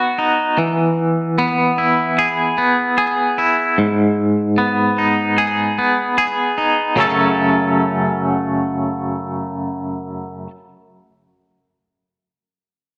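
A straight 4/4 pulse at 75 BPM sets a slow, deliberate pace for this brooding, cathartic rock excerpt in F# dorian, cut from a longer piece. A twangy electric guitar carries everything from 0.0 to 10.5 seconds, picking clean arpeggios that reach from F#2 up to A4. Its tone is compressed and up front, colored by tremolo and a slapback echo. The harmony moves from B to E and then to G#m, before the passage turns toward F#m at 7.0 seconds. A lush hall reverb with a 2.0-second decay surrounds the guitar, giving the recording a big, arena-scale sense of space.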